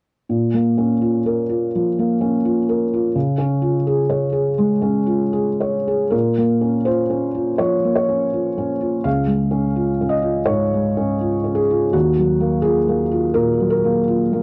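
A light reverb and the soft grain of a home cassette recording frame this reflective, intimate fragment of neoclassical minimalist piano, where a felt-muted upright sits up front with a mellow, hushed tone, playing alone in an unhurried 4/4 with uneven, rubato timing as its chords move from Bbm to Db and return before settling on Ebmadd9 at 11.9 seconds.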